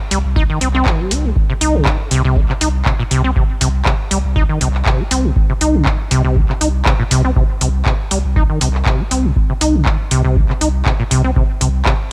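A squelchy, resonant sawtooth acid bass sits up front, its overdriven, chorused riff running through a filter sweep and pumping in a gritty, hypnotic acid house groove at 120 BPM, swung at 54% on the 16ths and centred on C minor. Beneath it a round sine sub bass holds a sustained C2 with tube saturation and the same sidechain pumping, while a booming analog drum machine adds handclaps and metallic hi-hats. A dry, deep electronic kick joins at 0.4 s, both drum parts touched by small room reverb, all set within a digital ambience in this section cut from a longer track.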